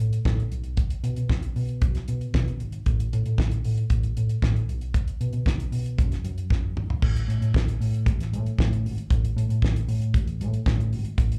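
Disco with a driving, danceable feel, this short cut pairs a dry, damped 70s acoustic drum kit, with a fat snare, tight kick, hi-hat, toms and crash cymbal, against a dark, round hollow-body short-scale electric bass played with the fingers through an amp, both sitting up front. A drum fill at 6.5 seconds carries the groove into a new section at 7.0 seconds. The sound is that of a live gig heard through the venue's PA, with only a faint touch of club reverb.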